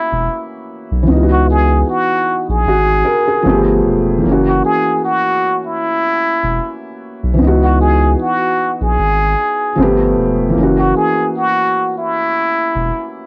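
A hazy, close-sounding home cassette recording with a moderate booth ambience opens this nostalgic lo-fi hip hop excerpt at 76 BPM, its sixteenths lightly swung over chords moving among F#7, C#m11 and G9. A plunger-muted trumpet carries the jazz-style solo melody with a wah-wah bite, light vibrato and scooped notes, its tone softened by tape, a low-pass filter and plate reverb, while a felt-muted upright piano supplies mellow, vintage accompaniment with audible action noise. Underneath, a deep, thick saturated sub bass holds sustained sine tones up front, entering at 0.1 seconds and stopping at 12.9 seconds, just before the piano's last sound at 13.3 seconds.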